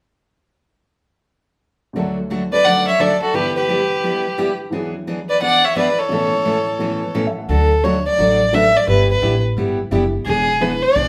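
Recorded as a band playing live together in one large studio, the sound carries a moderate reverb that gives this short cut from a longer piece a roomy, down-home glow. It's cheerful western swing country with a lilting swung feel, built on a simple cycle of D, G6, E7 and Aadd9. A woody, dark fiddle carries the melody up front with light vibrato, while a second, clear fiddle with an airy bow and a slightly boxy, intense tone traces a second line beneath it until about 7.2 seconds. Underneath, a picked dreadnought acoustic guitar with fresh strings adds bright picked support, and a worn, slightly detuned upright piano sits mellow and low in the mix, its action noise and short sustain giving it an intimate, homely character. At 7.5 seconds the second section begins and a pizzicato upright bass with steel strings enters to anchor the bottom end.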